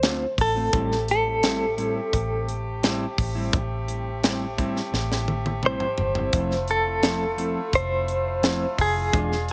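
Brooding and mournful, this straight-eighth soul blues excerpt in A minor at 86 BPM sets a compressed, up-front clean electric guitar solo with tremolo over dark fingered guitar stabs with tape echo, a round, foam-muted vintage bass, a tight funk drum kit with a high-tuned snare and a fill from 4.9 to 6.3 seconds, and a distant, roomy horn section holding jazz-style chords from 0.7 seconds, all moving from Dm7 through Am7 to Fmaj7 in a small room.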